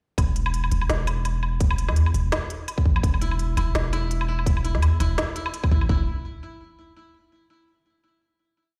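Tense and heavy, this short half-time drum and bass piece at 168 BPM opens straight into a drop, where a deep, sine-toned 808-style bass holds long gliding notes beneath a tight, layered electronic kick, both up front. A sparser electronic kit with a woody snare, crisp closed hats and a low woodblock sits further back, tape-warm and re-recorded in a large room. At 3.2 seconds a dry acoustic koto enters, played with fingerpicks in a repeating six-step arpeggio loop that drifts against the bar, roughened by vintage 12-bit sampler grit and digital delay, before a final note closes the piece from 5.9 seconds.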